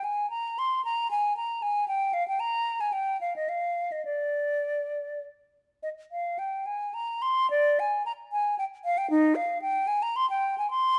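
A hollow, pure-toned concert flute with vibrato and tongued notes sits up front in this serene, dance-like classical excerpt, a baroque-style fantasia for unaccompanied flute in a rubato 3/4, ranging from Eb4 to C6 and repeating its opening section at 5.8 seconds within moderate stone-room reverb.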